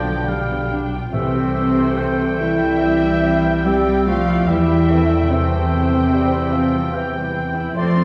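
A lyrical, tender slow romantic movement for symphony orchestra, where muted violins carry a veiled melody over second lines from a close-miked oboe, a clarinet, an airy flute group and a second muted violin section, while bassoon and distant muted violas accompany, mellow French horns sustain chords, muted cellos and lush double basses hold the bass, soft round timpani sound briefly from 1.1 to 2.3 seconds, and the whole cut from a longer piece sits in a wet scoring-stage reverb.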